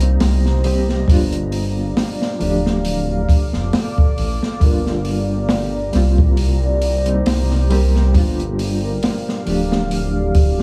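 Trip hop at 68 BPM in G minor, melancholic and dark, with a swung sixteenth feel over chords moving through Cm7, Gm7 and Dm. An up-front open jazz drum kit with a boomy kick and a medium-tuned snare sits in a small room alongside a deep, rumbling detuned saw bass, while a reedy, worn electric piano with fast tremolo and tape echo comps beneath a moody ambient pad carrying chorus, reverb and 12-bit sampler grit. At 4.6 s a pure, breathy sine lead enters in the background with vibrato, chorus and tape echo, carrying the melody to the end of this short excerpt.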